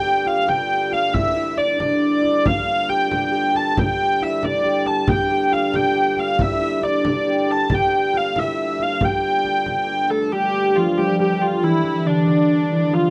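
A driving, ancient-feeling medieval dance at 92 BPM in a straight 6/8, cut from a longer piece, where a nasal, wheel-bowed hurdy-gurdy carries the melody up front, a fingerpicked concert harp rings out a second line beneath it, a breathing, band-limited pedal harmonium holds a low drone, and a deep frame drum played with hard hands runs from 0.3 to 9.9 seconds, all captured in a dry, close small-room sound with a 1970s studio character.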